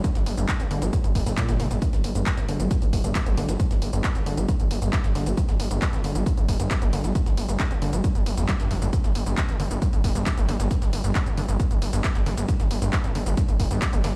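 Intense, driving peak-time techno at 135 BPM in straight 4/4, cut from a longer piece: a heavy, up-front electronic kick anchors the groove while an aggressive, distorted sawtooth synth bass with oscillator sync and ring modulation pumps against it from 0.2 seconds, a squelchy, resonant acid riff with filter sweep and delay sits in the background, techno handclaps, hi-hats and shaker pump with sidechain, and a very quiet, dusty sampler-style kit adds hi-hat and a medium-tuned snare, all heard as if blasted through a big sound system in a bare stone room.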